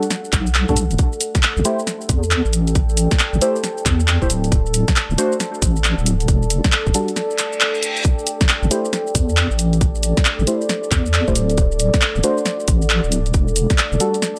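Soulful, late-night two-step UK garage, heard as a cut from a longer piece, where a tight, up-front kick and a swung garage kit of cracking snare, handclaps, hi-hat and shaker play alongside a deep, wobbling, detuned bass, while mellow chord stabs steeped in chorus, phaser and tape echo cycle through Am7, D7 and Em11 over a moody sidechain-pumped ambient pad, with a reverse cymbal sweeping in at 7.5 seconds.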